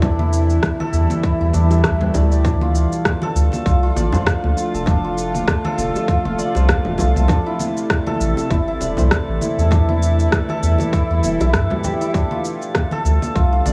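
A shimmering, hammered santur plays arpeggios with tape echo over a tense, detuned bowed-like drone, a round, deep analog bass up front, a tight, tape-warm electronic kick, an overdriven layer of electronic shaker, congas and rim click, and ringing, hard-handed congas and bongos in the background, while from 2.9 seconds a glassy, chorused glass-harmonics texture drifts into this hypnotic, mystical organic downtempo groove swung on the sixteenths.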